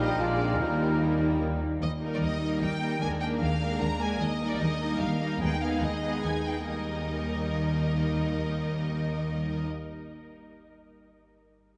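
A lush violin section carries a cheerful, lively classical melody in Eb major, bowed with expressive vibrato up close, while a second, more distant violin section and a rich viola section add smooth, even lines over a warm cello section and a focused double bass section. The piece moves in a brisk 3/4 at around 137-152 BPM. For the opening 1.6 seconds, a clear oboe, very quiet clarinet, airy and hollow flute ensemble, soft-attacked bassoon, roomy French horn chords, mellow tuba and barely audible timpani fill out the sound before the strings continue alone. The tempo eases between 3.6 and 6.7 seconds, all in a vast, echoing cathedral space with a faint mains hum.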